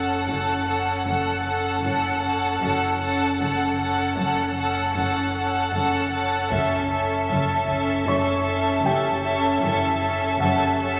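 Bathed in a heavy scoring-stage reverb and a layer of vinyl crackle, this ominous, mysterious suspense film-score fragment in 5/4 sets a clear, intense, vibrato-laden violin section on the high melody over an up-front second violin line. A lush viola section supplies accompaniment, while a distant cello section, a double bass section in the background and a deep sine sub-bass drone hold the low end. A soft, felt-muted upright piano adds mellow, vintage texture, and a very quiet taiko ensemble struck with hard sticks sounds only from 6.5 to 8.0 seconds.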